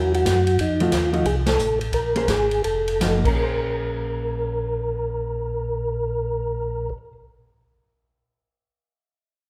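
Soul jazz organ trio in Bb minor, smoky and soulful, swinging at 156-183 BPM as a percussive, flute-like tonewheel organ carries the melody through a slow rotary speaker and chorus vibrato, a dark, compressed hollow-body guitar comps alongside, a round organ bass with key click sits up front, and a distant, roomy big-band drum kit plays until 3.3 seconds, with the tempo slowing from 0.6 seconds, a band accent at 1.4 seconds, and moderate concert-hall reverb over this short excerpt.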